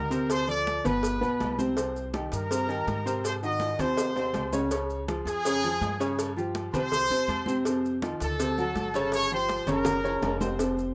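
A straight, danceable salsa groove in 4/4 drives this short, passionate cut from a longer piece. Congas, cowbell and bongos, and agogo bells with timbales sit in the background, joined by maracas: the congas are bright, damped and close, played with hard hands, the cowbell and bongos tight and high-tuned in a live room, the maracas grainy and mellow, and the agogo bells and timbales ringing from a distant, larger space. Up front, a trumpet section carries the melody with vibrato and a present, pop-style edge, beside a clear concert grand piano whose accompaniment reaches into deep bass. A pizzicato upright bass on gut strings adds a woody, dark, thumpy low end. Drum fills break in at 3.6 and 9.9 seconds over a restless chord sequence running from Dm7 through Dbmaj7#11 to Gm7b5, heard in a small room with a rough home-demo mix.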